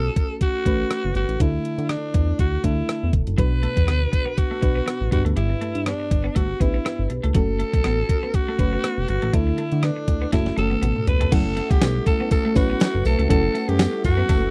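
1980s-style pop with an urgent, dramatic mood, cut from a longer piece, led by a breathy, raspy alto saxophone with slapback echo over a mellow FM electric piano, an up-front, glossy chorused synth bass and a thumpy, sampler-style drum machine with a fat snare. A bright, twangy twelve-string electric guitar riff joins in the background at 3.4 seconds, and during a drum fill a woody marimba with hard mallets adds a second line from 10.6 seconds. At 11.3 seconds a very quiet, warbling string machine with cellos brings sustained chords, shortly before a jingly tambourine appears, all in a dry, close 1970s-style studio sound.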